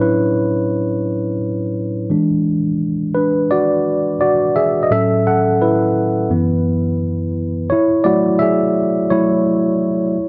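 Soul excerpt with a bittersweet, cinematic mood, featuring a solo tine electric piano that sounds worn and slightly out of tune yet clean, direct and up front, ranging from F#2 to F#5 over chords of A69, E9 and F#7sus4 before settling on F#m9 at 7.7 seconds, all with a gentle 16th-note swing and light reverb.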